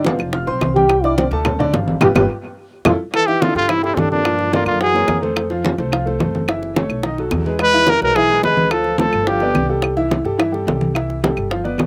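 Dry and open-air, this short cut from a longer Afro-Cuban jazz piece has a danceable, sophisticated feel over a straight four-beat pulse. A bucket-muted trombone takes a solo from the start, dark and veiled with light vibrato and a slapback echo, sitting back in the mix. Beneath it, a growly pizzicato upright bass, round low-tuned bongos struck with hard hands, thin-skinned vintage congas in the background and close, woody claves drive the groove, while a clear, boxy upright piano with audible action noise and its own slapback echo comps up front. A drum fill and a band accent land at 2.0 s, and at 3.2 s a breathy trumpet enters as the lead melody, whispered and intimate with scooped notes, vibrato and a slapback echo, while the trombone continues as a second line. After a pause, the two horns return together from 7.6 to 9.7 s, over sophisticated jazz harmony that settles on a C6 chord.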